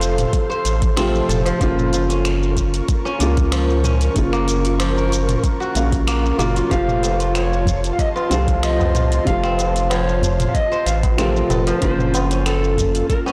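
Organic downtempo at 94 BPM with a gentle swing, meditative and earthy, moving between F and Gbmaj7 in a short cut from a longer piece, where a felt-muted upright piano with audible action noise and tape echo, ringing fingerpicked kora arpeggios and a detuned, airy pad in the background ride a deep, round analog bass that pumps with sidechain compression alongside an overdriven electronic kick. An afro-pop kit of finger snaps, metallic hats, shaker and toms adds texture, joined at 6.9 s by low-tuned, close and dry tabla, while a dark, slightly broken-up electric slide guitar carries the melody from 6.7 s. The mix sits in a moderate echo-chamber reverb and sounds blown-out and overdriven overall.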